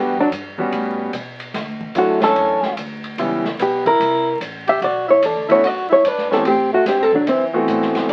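A clean, compressed hollow-body jazz guitar carries the melody up front, over a breathy, close-miked tenor saxophone second line with light vibrato and scooped notes, an intimate baby grand piano with audible action noise and long sustain, and a woody pizzicato upright bass, joined at 0.2 seconds by an airy small-room drum kit with dark cymbals and a boomy kick, in this sophisticated, warm swing-and-bop excerpt in D major at 147 BPM, heard through the crackle of a very old 78 rpm record.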